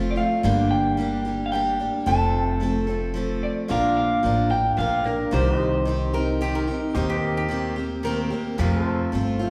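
Honky-tonk and classic country in a straight 3/4 at 110 BPM, this nostalgic, down-home excerpt in Bb major moves through Gm, F, Bb, Cm, Eb6 and back to F. An electric guitar through a small old amp carries the melody with a twangy, slightly broken-up, lo-fi bite until 6.6 seconds, while a picked steel-string acoustic guitar sits up front with fresh-string sparkle and audible finger squeak. An upright bass underpins it all with a woody, thumpy pizzicato, and at 3.7 seconds a clean, compressed pedal steel guitar enters with sustained chords and volume swells played with fingerpicks. A lap resonator guitar adds a brief metallic, nasal slide line as a second voice from 6.1 seconds. The whole band sits in a wet recital-hall reverb that lends the small group the spacious ring of a church or concert hall.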